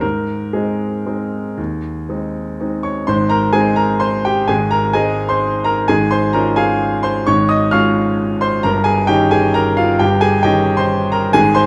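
Heard through a moderate recital-hall reverb and a dark overall production, this short fragment of a playful, graceful classical piano waltz in Ab major features a solo grand piano, brilliant and up front, ranging from G1 to F6 in a 3/4 lilt at 113-140 BPM with rubato, moving from Ab through Db/Ab at 5.9 seconds to Eb7/G at 8.6 seconds.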